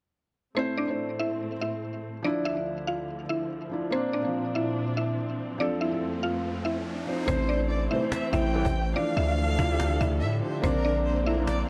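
Dark and hard-hitting, this half-time trap cut at 143 BPM in A phrygian opens with a felt-muted upright piano, soft and intimate with audible action noise, beneath a woody, round FM synth pluck melody treated with chorus and digital delay, all over a lush, bowed symphonic string bed moving through Am, Dmadd9, Bbadd9 and F. An electronic riser from 5.3 s leads into the second section at 7.3 s, where a heavy, saturated 808-style bass sits up front alongside a snappy acoustic cajon and a sul tasto chamber violin line with delay. Clear, tight brass stabs sound in the background within a small room ambience.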